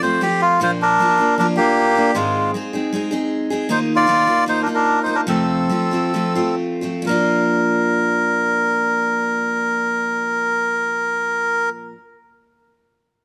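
In straight 4/4 at a tempo between 124 and 156 BPM, this short country cut taken from a longer piece has a sunny, down-home mood in Bb major. A reedy, nasal melodica carries the melody up front, its breathy tone and plastic-case character plain to hear from the start until 11.7 seconds. Beside it, a picked steel-string acoustic guitar with a bright, full-bodied dreadnought sound plays accompaniment throughout, with audible finger squeak. The chords move from F to Bb, Ab and an Ebsus2 before returning to F and Bb. The music slows down between 3.7 and 7.1 seconds, at which point a second section begins and runs to 10.9 seconds. Light reverb gives both up-front instruments a little air.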